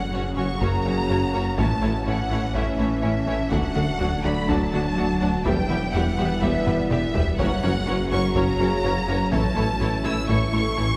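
A straight 4/4 pulse at 124 BPM drives this brooding, relentless cinematic film-score cut, where hard-stick taiko drums enter at 0.6 s and hit a fill at 6.7 s under a round analog bass riff, a deep sub bass with octave, and punchy, detuned unison-pluck arpeggios. A lush, vibrato-rich studio violin section carries the melody from E5 to E6 over an F#, A, D, Em progression, supported by a distant symphonic violin second line, smooth violas, very quiet cellos and double basses, a roomy tuba, clear trombones, warm French horns and an evolving, bright wavetable pad with ensemble chorus. A dark, intimate grand piano with audible action noise adds texture until 7.4 s, and the whole ensemble sits in a wet scoring-stage reverb that suggests a church or concert hall.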